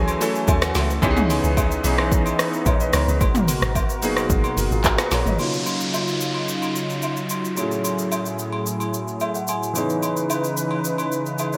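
Smooth, vintage grand piano chords with brief fills and an up-front, detuned sawtooth pad with chorus open this soulful, late-night amapiano fragment over a round, percussive log drum bass that drops out at 5.4 seconds, alongside a layered deep house kit of punchy kick, woody snare, dark hats, handclaps, rim clicks, shaker and toms under gated reverb and acoustic agogo bells and woodblock, while an electronic downlifter and a filter sweep carry the second half through a bright 1980s-style digital sheen with plate reverb.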